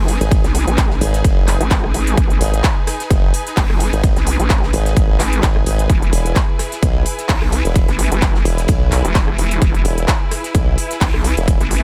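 A nasal, resonant vowel-sweep wobble bass and a biting, lush symphonic string section with vibrato open this aggressive, swaggering bass house excerpt in G# minor at 129 BPM with swung 16ths; a sawtooth formant-sweep wobble bass soon doubles the low end, both basses chorused, saturated and pumping up front; the strings pump too; and a punchy overdriven electronic kick, a big-room dance kit of crisp hats, handclaps and rim clicks, and a very quiet, dry 70s kit with dark cymbals and a fat snare drive the G# minor to E change at 5.9 seconds in a small, roomy space.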